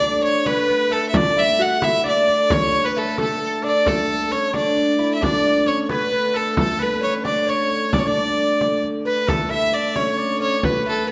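In a straight 6/8, this rustic, festive medieval dance is carried by a rich, smooth fiddle melody with light vibrato, played up front. A bright, folk-style shawm and a delicate fingerpicked lute with doubled nylon strings weave second lines above a dark, woody hurdy-gurdy drone, while a deep frame drum struck with hard hands drives the pulse until 10.8 seconds. The ensemble sits in a recital-hall reverb, and the music turns to a new section at 9.3 seconds before this cut from a longer piece ends.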